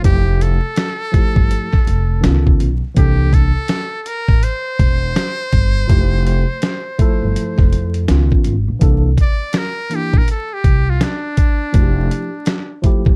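Relaxed and warm, this jazz-hop excerpt rolls along at 82 BPM in F major with a swung 4/4 groove, carried by a gritty, compressed sampler-style drum kit with a thumpy kick and an up-front, woody pizzicato upright bass. A worn, slightly out-of-tune tine electric piano plays mellow chords through plate reverb, moving through Fmaj9, Db9 and C13, while a buzzy, close-miked trumpet with a metal mute carries the melody with vibrato and takes a solo from 8.8 seconds. The dark production is dusted with vinyl crackle.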